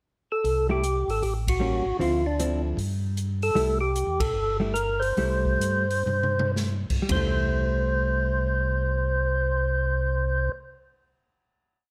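Greasy and bluesy, this short, swinging soul jazz organ trio piece opens with a pickup bar before a fat, lightly overdriven percussive tonewheel organ carries a motif-based melody through its slow rotary speaker, over a round, dark organ bass in a two-feel, dark syncopated comping from a clean hollow-body jazz guitar, and a punchy, polished big-band drum kit keeping time on the hi-hat, with band accents at 1.4 and 4.1 seconds, a slowing down from 3.6 seconds, a drum fill at 6.1 seconds, and a held final chord from 7.1 seconds in light reverb.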